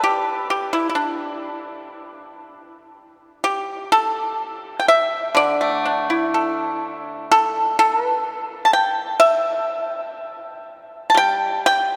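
A long cathedral-like reverb fills this church or concert-hall recording, giving a serene, flowing 12-second passage of Chinese traditional music in the D zhi mode. A solo pipa, played with fingerpicks, sits up front with a percussive, close attack, ranging from D3 to A5 at a free, rubato 62 BPM in 2/4. Cut from a longer piece, it opens with a brief first section before moving into a new section at 3.4 seconds.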